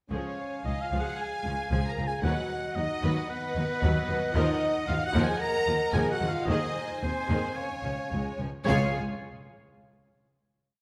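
A wet scoring-stage reverb with a 1.8-second tail surrounds this short, soaring piece of heroic adventure film score in D-flat major, moving at a straight 113 BPM in 4/4. A lush violin section carries the melody with smooth, even vibrato, doubled at the octave by a clear solo oboe. Behind them, a second, focused violin section, a hollow flute with crisp attack and a mellow clarinet hold sustained chords. A French horn section with soft attack adds a melodic layer to the harmony. Intense violas drive a rhythmic ostinato that answers at phrase ends, while close, rich cellos play a driving bass ostinato and sustained bass, doubled by bowed double basses. The adventurous theme runs until 8.7 seconds and resolves onto a final chord that rings out to 10.8 seconds.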